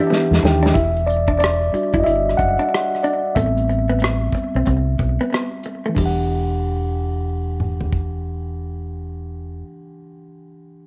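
A light, small-room reverb frames this smooth, introspective slice of neo-soul and R&B, cut from a longer piece and moving at 92 BPM in E minor with a swung sixteenth feel over Em9 and Am9 chords. After an opening fill from the acoustic drum kit, with its punchy kick and medium-tuned snare played with bundle sticks, the mellow, up-front tine electric piano takes a solo from 0.7 to 6.0 seconds. Around it, a hollow-body jazz guitar adds a dark, compressed, picked second line with slapback echo, and a round, deep dub fingered electric bass carries the low end.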